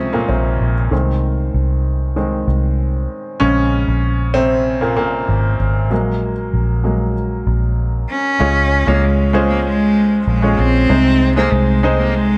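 Piano-driven pop at 96 BPM in a hopeful mood, where a woody, intimate upright piano with audible action noise and a round, foam-muted vintage electric bass carry a progression from Db through Ab/C, Bbm7 and Gbadd9/Bb, before a single nasal, boxy cello enters with a bowed vibrato melody at 8.1 seconds, all set in light studio reverb within a dark, warm production cut from a longer piece.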